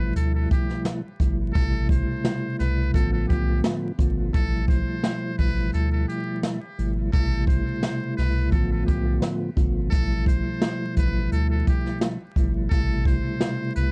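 A buzzy metal-muted trumpet carries the melody with light vibrato and a tape echo, floating over a mellow, flute-like tonewheel organ that churns through a fast rotary speaker with a faint cassette haze. Underneath, a round, deep analog bass and a small-room brush kit with a boomy kick and smooth snare give this moody boom-bap hip-hop cut a lazy swing, with the drums entering at 0.2 seconds and a break arriving at 5.7 seconds. The dark production sits in light reverb, and vinyl crackle adds a dusty, late-night feel.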